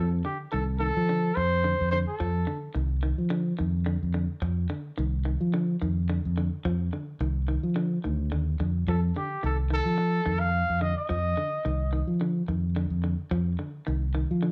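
Joyful and funky, this afrobeat excerpt moves at 108 BPM in 4/4 with a gentle sixteenth-note swing, sitting in F mixolydian over a single F7 chord. A fingered electric bass anchors the groove from start to finish, its warm, direct, amped tone placed up front. A clean semi-hollow electric guitar plays fingered arpeggios throughout in a narrow low-middle register, its hollow-body sound sitting further back in the mix. A mellow trumpet carries the melody as a solo voice, with vibrato and a vintage, pop-style character, heard from the opening to 2.6 seconds and again from 8.9 to 12.0 seconds. Light reverb and a small room ambience give the whole fragment, which is cut from a longer piece, an intimate, close feel.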